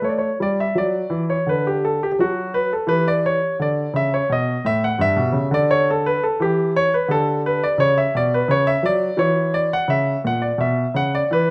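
A solo grand piano opens on a Gsus2 chord and settles onto D, beginning a serene, radiant baroque-style suite movement in 3/4 at around 85 BPM, played with a free, rubato feel. The piano sound is polished and present, placed up front by close, detailed microphones, with a moderate recital hall reverb of about 1.3 seconds lending it air. The harmony passes through E minor and a B7 before arriving at E minor over G, then, from 7.1 s, the music settles in B minor by way of G over D. A C#minor add11 and an F#7 over E lead the phrase to rest on B minor add9. The piano spans G2 to F#5 throughout, and the recording is a short portion cut from a longer piece, ending at 11.5 s.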